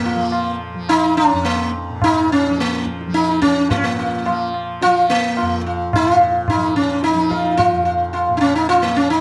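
A sitar and a softly plucked tanpura sound together from the opening moment of this meditative, introspective Hindustani classical excerpt, cut from a longer piece and tuned slightly below standard pitch at A4 = 439 Hz. The plectrum-plucked sitar carries the melody up front, its round, buzzing tone haloed by shimmering sympathetic strings, while the tanpura holds a low, buzzing, shimmering drone at a much lower level beneath it. A high-tuned tabla with a short ring joins at 0.3 seconds and sits in the background, keeping a 7/4 cycle with a straight feel that starts around 108 BPM and gradually speeds up. The music moves into a new section at 3.7 seconds, drawing the listener further into its introspective mood. Close, detailed microphones capture the instruments within a moderate recital hall reverb that lends a gentle sense of space.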